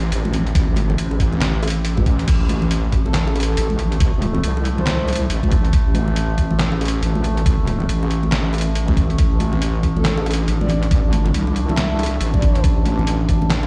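A wobbling, saturated wobble bass sits up front alongside a knocking, tape-warm electronic kick in this cavernous, heavy deep dubstep excerpt, moving at 139 BPM in a half-time, swung feel over a held A minor chord. Beneath them, a sawtooth drone with moving overtones sustains chords with chorus and built-in reverb, while a gritty, pitched-down sampler-style kit of crash, handclaps, hi-hat and snare carries overdrive, and bright, hard-handed congas and bongos trail dub echo in the background. A soft, breathy flute-like synth lead with vibrato surfaces twice, from 3.1 to 5.2 seconds and again from 10.0 to 12.6 seconds, all set in the boom of a big sound system in a bare room.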